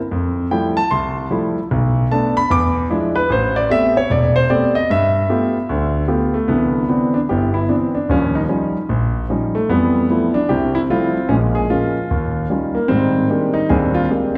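Solo jazz in C major at 150 BPM, relaxed and playful with a 64% swing on the eighths, is carried by a lone concert grand piano whose warm, natural tone and deep bass sit up front across a span from E1 to D6, moving through lush extended chords such as Fmaj9, E7b9 and Abmaj9#11 and turning to a new section at 6.5 seconds, all bathed in a wet scoring-stage reverb and recorded in a church or concert hall in this short passage cut from a longer piece.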